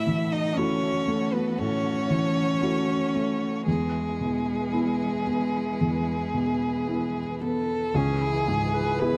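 A dark, lightly reverberant production with lossy artefacts frames this reflective, longing neoclassical fragment in a rubato 4/4, where a focused, vibrato-laden solo violin sings the melody up front over a smooth, close cello line and the mellow, intimate tones of a felt-muted upright piano with audible action noise, while a chamber string section holds sustained chords in the background and a single viola joins at 8.0 seconds as the harmony moves from A6 through E to C#m7.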